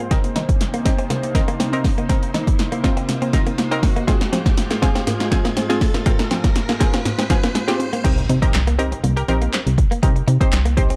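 At 121 BPM in a straight 4/4, a punchy, tape-warm analog drum machine sits up front with kick, snare, handclaps, hi-hat and crash, driving a bittersweet yet confident dance-pop cut in C minor that moves between Cm7 and Ab6 through a build-up with a drum fill and a background riser. A shimmering, retro pulse-width pad holds sustained chords while a woody, round mallet-like pluck plays arpeggios with delay, both sidechain-pumped and stopping at 8.0 seconds, as a clean, direct-recorded electric guitar riff with lush chorus and a bright, pumping chord stab carry on through. At the drop at 8.0 seconds an impact lands and a funky, detuned plucky analog bass enters up front, all set in a dark production with light reverb.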